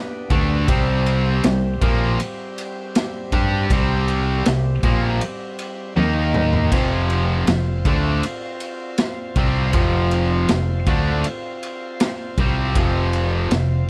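Blues rock power trio with a southern rock edge, this short excerpt from a longer piece has a gritty, raunchy mood and a straight, unhurried groove. A reedy tonewheel organ with key click, light overdrive and a slow rotary speaker opens alone, sits in the background holding sustained chords, and the band joins at 0.3 seconds. Up front, a double-tracked, picked electric guitar drives an overdriven riff, while a fingered bass adds a dark, round, amped low end. The garage drum kit sounds saturated and pumping in a small room, with a boomy kick, a medium-tuned snare, crash, ride and toms, and a rolled-off top, and it plays a fill from 6.0 to 6.7 seconds. The harmony moves from G to C5, then to Eb5 and F5, all in a dry sound with little reverb.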